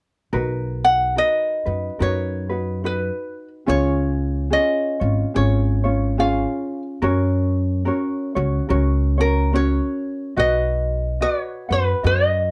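A mellow, thumb-plucked ukulele melody enters at 0.8 s over a light, fingerpicked ukulele accompaniment and a dark, woody pizzicato upright bass on steel strings in this languid, relaxed Hawaiian cut with a swung lilt, moving from Bmaj7 through C# and F# back to B, all three parts sitting up front in a moderate small-room reverb.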